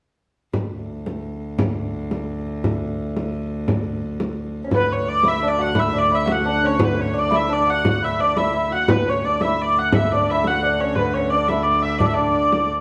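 A rustic, ancient-sounding medieval dance in a straight 6/8, cut from a longer piece. It opens at 0.5 s with a close, dry frame drum and a clear, floating viola da gamba holding a pure, ringing D2 drone with light vibrato. Around 4.7 s a delicate, fingerpicked nylon-strung lute takes a second line beneath an up-front, nasal and reedy hurdy-gurdy melody, with the whole band playing live in one room under a wet, large studio reverb.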